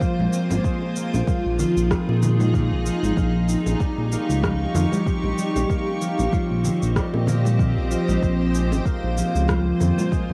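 A loping 4/4 groove with a light sixteenth-note swing sets up this meditative, organic downtempo fragment, carried by a soft, tape-warmed electronic kick, a subdued electronic shaker and rim click, and very quiet ringing congas and bongos that join at 0.2 s alongside a dark, smooth synth bass that sits up front and pumps with the sidechain. Over this, a bright, fingerpicked concert harp plays ringing arpeggios through an analog delay, while a blurred, full-bodied granular cloud pad sustains slowly evolving chords, washed in its own reverb and breathing with sidechain pumping. The harmony drifts over a Bb pedal from Fm7/Bb to Eb13/Bb and Cm7/Bb before settling on Bbm7, and the whole piece has the hazy character of a home cassette recording with moderate studio ambience.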